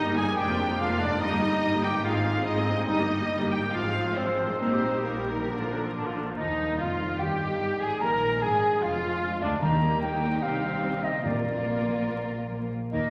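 In a flexible, rubato 4/4, this urgent and dramatic classical passage, cut from a longer piece, unfolds in a sweeping orchestral setting. A lush symphonic violin section carries the melody with a focused, smooth-topped vibrato from the background, while a distant studio violin section and a vintage-toned clarinet trace expressive second lines. The viola section sits up front with a rich, even accompaniment, as a ringing, thumb-plucked harp spins arpeggios and bowed cellos and double basses ground the harmony from below. The clarinet drops out at 6.2 seconds, and a pure, straight-toned flute takes up a second line at 6.4 seconds, with round calf-head timpani played with soft mallets arriving at 9.6 seconds. A wet scoring-stage reverb and a layer of vinyl crackle give the whole a glowing, aged sheen.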